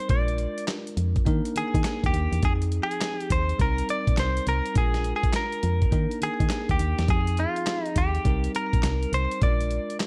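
A twangy, picked clean electric guitar carries the melody from the start with a slapback echo, over a bell-like tine electric piano and a gritty, compressed sampler-style drum kit of thumpy kick, medium-tuned snare, hi-hat and handclaps, in a confident, punchy new jack swing groove at 103 BPM with a swung 16th feel in F dorian. A round, dark FM bass with a fast attack joins at 0.1 s, cycling with the band through Bb7, Eb5, Fm7 and Cm7. The guitar and drums sit up front in a dry mix, and the passage is cut from a longer piece.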